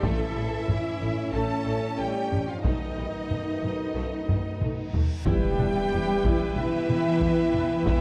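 Dramatic and epic, this short cut from a cinematic orchestral film score moves at 92 BPM, with a studio violin section carrying an expressive, vibrato-rich melody over a background symphonic violin line, smooth violas, focused cellos and distant double basses, while a warm French horn section and clear trombones hold sustained chords and a close, dry taiko ensemble plays with hard sticks. A taiko fill from 4.3 s and a reverse cymbal lead into a huge, dark impact at 5.3 s, where the harmony moves from A through B7 to E minor and a lush symphonic string section joins with sustained chords. The whole sits in a concert hall reverb with a dark production.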